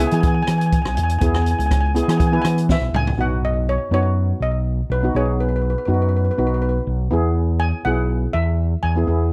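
A dark, warm production with light reverb frames this carefree, bouncy calypso excerpt in B major, moving at 122 BPM in a straight 4/4. Two double seconds steel pans carry the upper parts. One is struck with hard rubber sticks for a bright, shimmering melody with a slapback echo, and the other uses soft rubber sticks for a mellow, mid-forward accompaniment washed in plate reverb. Underneath, a fingered electric bass sits up front with an amped, overdriven yet round tone. An open jazz kit with a natural small-room sound brings hi-hat, rim click, toms, a high-tuned snare and a boomy kick, closing with a drum fill from 2.7 to 3.2 seconds before it stops. From 3.2 seconds the harmony shifts from E to Badd9, returning to E at 7.1 seconds as the pans and bass carry on to the end.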